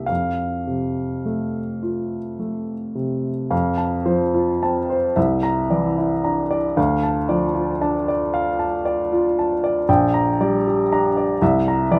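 A slow, rubato 6/8 lilt of about 34-40 dotted-quarter beats per minute carries this tender, dreamy romantic nocturne in F major, a brief passage cut from a longer piece. A solo upright piano with a woody tone and long sustain sits up front in light reverb, spanning Bb1 to Bb5. After an opening on F, a new section begins at 3.5 s and drifts through C9, Dm and Gm/Bb before settling back on C9 at 11.4 s.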